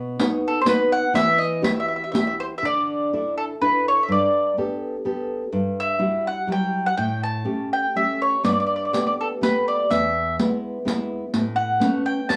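This Italian folk serenade, cut from a longer piece, carries a romantic, passionate mood in a rubato 3/4 at 125 BPM in D major. A fingerpicked nylon-string guitar opens and supports the whole passage with a classical, warm accompaniment. The mandolin enters at 0.5 seconds to carry the melody up front, its picked double strings sounding mellow and woody. A riq adds bright jingles with a vintage, band-limited character, dropping out at 2.4 seconds and returning at 8.4 seconds. The harmony moves through colourful chords such as Emadd9, Gadd9 and A7 before settling on Aadd9. A small, wet studio room surrounds the acoustic instruments.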